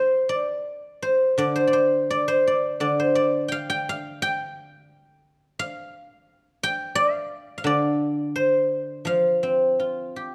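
In a free, rubato 4/4 pulse around 85 BPM, this serene, flowing 10.3-second fragment of a longer traditional Chinese solo piece features an up-front acoustic guzheng played with fingerpicks, its silvery, ringing tone spanning D3 to G5 within a dark production touched by light reverb.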